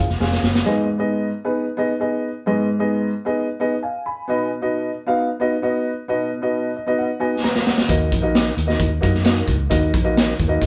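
A short cut from a longer uptempo 1960s-style soul piece at 132 BPM opens with a brief drum fill over bass and a dark, woody upright piano whose slightly detuned, worn tone carries the warm, uplifting chords alone from 0.7 s. The piano then adds its own fill as the gritty, punchy garage drum kit re-enters with a fill at 7.4 s, and the round, foam-muted electric bass returns at 7.9 s, all in a moderate live-room reverb.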